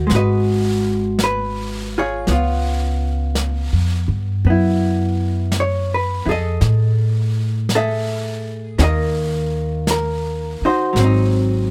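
The recording sounds dry, close and detailed, with a short excerpt from a longer jazz ballad. The mood is wistful and melancholic at a slow swing in 4/4. A dark, clean hollow-body electric guitar plays picked accompaniment up front, its tone compressed. Beside it, a pizzicato upright bass with gut strings gives a woody, thumpy low end, also placed close in the mix. Softer in the background, a brush kit in a studio room plays a medium-tuned snare with brushes, along with the hi-hat. The harmony moves from Abm7 through Db7 to a long Gbm11, then settles on Ebm before turning to Ab7 near 11.0 seconds.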